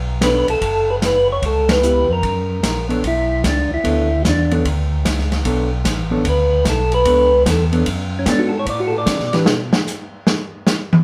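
A tonewheel organ opens this bluesy, soulful soul jazz organ trio cut, laying down a fat bass line with audible key click, vibrato and a slow rotary speaker. The rest of the band joins almost at once in B minor at 149 BPM, with a firm swing on the eighth notes. A mellow, round percussive tonewheel organ carries the melody up front, its third-harmonic percussion giving each note a percussive attack. A dark, fingered hollow-body electric guitar supplies clean accompaniment, and a vintage drum kit sits close with a punchy kick, a medium-tuned snare, dusky cymbals and toms in a small, pumping room with a rolled-off top. The band hits an accent at 1.6 seconds over a Bm9, C#m7b5 and F# progression, and the organ solo begins at 3.0 seconds on a long stretch of Bm9. At 9.5 seconds the harmony drops out and the drums take a short solo, all heard from further back in a wet studio reverb.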